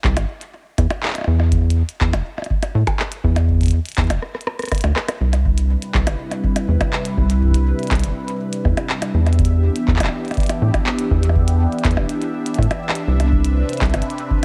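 A rubbery, saturated square-wave bass sits up front from the start alongside a deep electronic kick and a glitchy kit of clicky hi-hats, handclaps, rim clicks and percussion blips touched with tape echo, setting a playful IDM groove at 122 BPM in C major. After a drum fill at 4.2 seconds, a swirling, detuned analog pad with phaser and chorus slowly blooms in at 5.2 seconds, sustaining Cmaj7 and Em7 chords that lend a wistful glow. The mix feels close and fairly dry overall, and the passage is taken from a longer piece.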